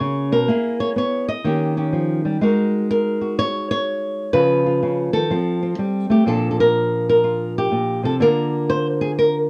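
A fingerpicked flamenco guitar plays alone and up front throughout this playful, relaxed solo jazz excerpt at 124 BPM with a gentle swing, its dark acoustic tone carrying audible finger squeaks through a moderate studio reverb as the harmony moves through half-diminished and dominant chords before settling into Bb major at 6.3 seconds.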